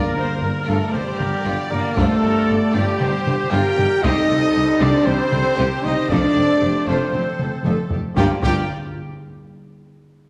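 Timpani, French horns, trombones, trumpet, flutes, violins and violas open this dark, dramatic epic orchestral film cue in G minor at 116 BPM, cut from a longer piece, with mellow horn chords sitting up front over the trombones as a warm solo trumpet punches out stabs, two bowed violin sections with vibrato carry the melody and a second line beside a bright flute section and clear violas, cellos, double basses and tuba anchor the bass from 0.2 seconds, and a vintage, band-limited taiko ensemble joins at 0.9 seconds, with a drum fill from 7.4 seconds before the timpani returns, in a wet scoring-stage reverb.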